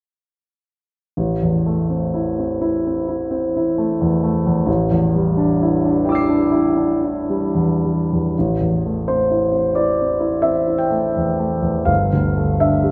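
A clear concert grand piano plays alone and up front from 1.2 s, its open sound reaching from a deep bass to high notes in a mysterious, nocturnal piece of impressionist classical music. Set in an uneven five-beat metre with a free, rubato feel, the harmony drifts from A minor toward a hazy C chord with added colour, and a new passage begins at 8.3 s before settling on a suspended G near the close. A moderate concert hall reverb surrounds the instrument, and the excerpt stops at 12.9 s as though cut from a longer work.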